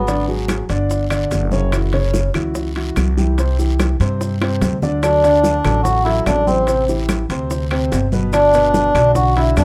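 Lively and sunny, this short cut from a longer Afro-Cuban jazz piece moves in a straight 4/4 over a rough home-demo mix with moderate studio reverb. A concert grand piano carries the accompaniment throughout, sounding intimate and vintage, with deep bass, long sustain and audible action noise, while an up-front upright bass plucks a growly, woody, steel-string line beneath it. The percussion section sits mostly in the background: round, low-tuned bongos played with soft hands, thick-skinned congas, grainy, saturated maracas, raspy guiro, ringing metal-shell timbales, and dry, woody claves that join at 0.5 seconds. The vibraphone, played with soft mallets and a slow motor vibrato, and a reedy, nasal melodica play only a brief fragment at the very start, then return at 5.0 seconds after a drum fill, the airy, metallic vibraphone taking the melody while the breathy, up-front melodica adds a second line below it. 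The harmony moves through chords such as Bm6, Cadd9, Dadd9 and Gmaj7.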